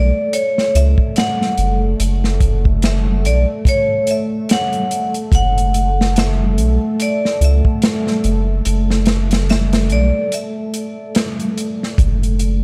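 A dark, warm production in a small room gives this brooding trip hop excerpt, cut from a longer piece, a close and shadowy feel at 72 BPM in 4/4, with a 16th-note swing and tuning slightly below standard pitch. A soft dub sub bass sits up front, deep and round, holding the low end on F# minor, while a moody ambient pad, thickened by chorus and its own reverb, sustains detuned sawtooth chords beneath. A swinging big-band drum kit enters at 0.3 seconds with a punchy kick, medium-tuned snare and hi-hat, sounding acoustic, airy and polished in its small room ambience. Over this, a vibraphone struck with hard mallets carries the metallic, ringing melody through tape echo, its slow motor vibrato colored by a boxy space. A break arrives at 10.3 seconds, and the vibraphone falls silent at 11.1 seconds, leaving the pad, bass and drums to close the passage on the same F# minor chord.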